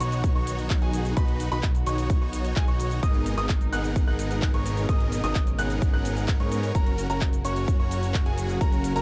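A straight 4/4 pulse at 129 BPM drives this anthemic, euphoric festival progressive house passage in B major, cut from a longer piece and tuned to A4 = 438 Hz. A punchy, up-front electronic kick enters at 0.2 s and holds until 8.7 s, while a big-room dance kit of handclaps, metallic hi-hats and shaker sits further back with a small-room character. Underneath, a fat, nasal analog bass built from detuned sawtooth and square waves plays a filter-plucked line between F#1 and G#2, pumping with sidechain compression. A huge, bright supersaw lead carries the riff between B3 and F#5 with delay and the same pumping, and a clear grand piano adds short-sustained arpeggios high above, also delayed and pumping. A dark, veiled, muted string section bowed con sordino holds soft sustained chords in the background through the progression of B, G#madd9 at 3.0 s and F#, all inside a digital ambience.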